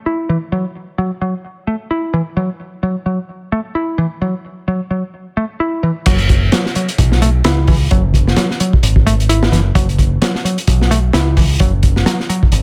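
A saturated, gritty breakbeat drum kit with dark cymbals, a tight kick and a rolled-off top hits up front at the drop at 6.1 seconds, joined by a round, punchy picked electric bass holding down the low end in F# minor. Before that, a higher picked electric bass plays a riff alone from the start, filtered and washed in tape echo, continuing until 12.4 seconds over an F#7(no3) chord. This gritty, swaggering breaks cut moves at 130 BPM with a swung 16th-note feel and sits in studio reverb.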